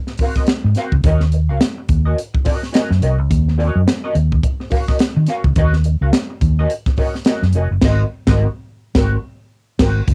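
A round, foam-muted fingered electric bass sits up front in this sly, hypnotic funk excerpt at 106 BPM in Eb dorian, entering at 0.6 seconds over a 16th-note swing feel. A crisp fusion drum kit with a punchy kick, high-tuned snare, hi-hat and dark crash cymbal sounds airy and polished. Further back, a clean, picked hollow-body jazz guitar with wah and cassette-tape coloring moves between Ab9 and Ebm7 chords, and the band hits an accent at 7.8 seconds, all in a homey cassette recording with light reverb.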